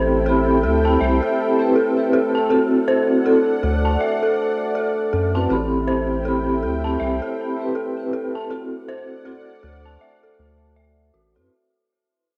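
Trip hop at 80 BPM with a swung 16th-note feel, this dark, cinematic excerpt from a longer piece sets a mellow, ringing soft-mallet vibraphone with motor vibrato, tremolo and tape echo up front over a moody, detuned sawtooth pad with chorus, alongside an eerie, inharmonic FM synth bell playing chorused arpeggios through analog delay and a round, deep square-and-sine bass, as the chords move between Am7 and D7 in a lightly reverberant cassette home recording that fades out from 3.5 seconds.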